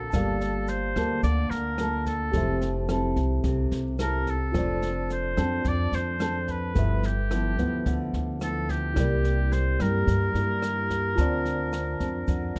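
Romantic and relaxed, this bossa nova fragment sets a clear oboe melody with light vibrato over thumb-plucked nylon-string guitar, a worn, slightly out-of-tune tine electric piano, a woody pizzicato upright bass up front and a brushed jazz drum kit with a boomy kick and rim clicks, while a grainy egg shaker sits in the background and chords such as Gm9, G13 and C7 pass under light reverb in a dark production.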